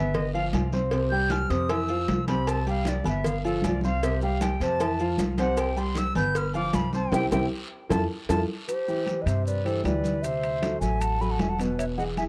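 A bright, pure silver concert flute with vibrato and a crisp attack takes the solo through the opening of this lively, sophisticated Afro-Cuban jazz excerpt in C major, played at 155 BPM in a straight 4/4 and tuned to A4 = 438 Hz. An up-front grand piano, intimate with audible action noise and a deep bass, supplies accompaniment over a woody, thumpy pizzicato upright bass, as the harmony cycles among G7, C and Fmaj7. In the background sit damped, thick-skinned congas struck with hard hands, a round low-tuned cowbell, and ringing metal-shelled agogo bells and timbales. Alongside them plays a raspy guiro, with grainy, mellow maracas joining in the background at 2.5 seconds. A band accent and drum fill close the flute's passage, the cowbell drops out at 8.4 seconds, and at 8.7 seconds an airy clay alto ocarina with a straight tone takes the melody over Cmaj9 and D9 chords. The sound is dry and close, in the manner of a 1970s studio recording, with little reverb.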